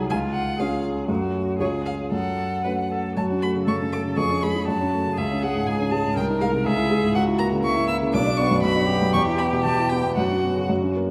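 This quick classical-period movement for piano trio, cut from a longer piece, moves at 120 BPM in a straight 2/4 and sits in F# minor with tuning at A4 = 444 Hz, giving it a stormy, urgent mood. A dark, mellow baby grand piano sits up front with a long sustain, carrying the accompaniment from its low B1 up to Gb4. Above it, a single bowed violin sings the melody high in its range, from C#5 to E6, while a single bowed cello supplies a second line between D4 and B4, both strings rich in tone, smooth and even, with vibrato. A brief opening phrase swings between C# and F# minor before giving way at 3.2 s to a longer passage that moves through C# minor, an F#7, B minor and E minor before settling on an unresolved F#sus4 at 10.2 s. A wet scoring-stage reverb lends the trio a spacious, enveloping sound.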